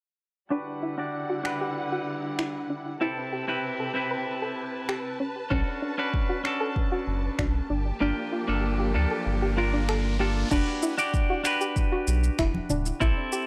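Sunset chillout at 96 BPM in E minor, wistful and relaxed, where a bright, twangy clean electric guitar and a mellow, chorused pluck arpeggio both carry filter sweeps and analog delay, distant bowed strings hold lush sustained chords through Em9, Am9, Bm9 and Gm9, a tape-warm deep house kit adds crash cymbal, finger snaps and shaker, a round, dark analog bass with tube saturation and an up-front electronic kick arrive at 5.5 seconds, a background riser enters at 7.5 seconds and the kick drops out at 8 seconds, and hard-handed congas appear briefly at 12.5 seconds in this dry, gritty hardware recording cut from a longer piece.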